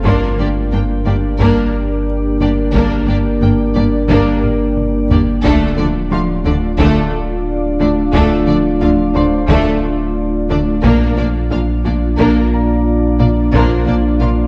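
Dark, distant French horns hold sustained chords over a deep, round sub bass in this tense, futuristic hybrid orchestral and electronic film cue at 89 BPM in D minor, with rich bowed violas, lush vibrato violins, quiet cellos with portamento and woody double basses alongside a glassy, ethereal FM pad, crystalline detuned wavetable pluck arpeggios, a clear, intimate piano with digital delay and very quiet, close taiko whose fill at 4.4 s marks the move from Gm to Dm, then Bb at 10.8 s, all in a dark, tape-saturated scoring stage.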